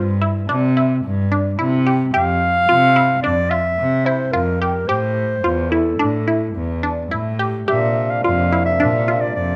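Close, detailed microphones and a light reverb give this short cut from a longer contemporary chamber piece an intimate, present sound. Set in an uneven 5/4 with a straight feel, the music feels hopeful yet restless as it moves through C, F5, Am and Bbadd9. A dark, classical-style clarinet sits up front with the soft-attacked melody, while a single bowed cello beneath it carries the bass with a rich gut-string tone, light vibrato and a period-style, reedy edge. Threaded through the ensemble, a juicy, squelchy synth pluck with a fast attack and short decay spins arpeggios through a phaser. Near the close, at 7.7 seconds, a pedal harmonium enters with mellow, breathing sustained chords that sound dry and full.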